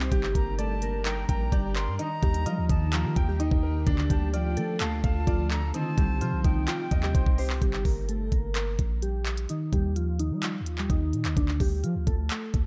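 A dark, digitally ambient production frames this eerie, melancholic hip hop excerpt in a half-time trap feel, with a knocking electronic kit of crisp hats and handclaps sitting up front beside a deep, boomy 808-style bass. Glassy, chorused digital keys carry the melody, joined by a breathy silver concert flute with tape echo, a brilliant concert grand piano, and a blurred, evolving granular cloud pad in the background. The flute, piano and pad drop out at 7.6 s, when a filter sweep on the keys colours the final stretch.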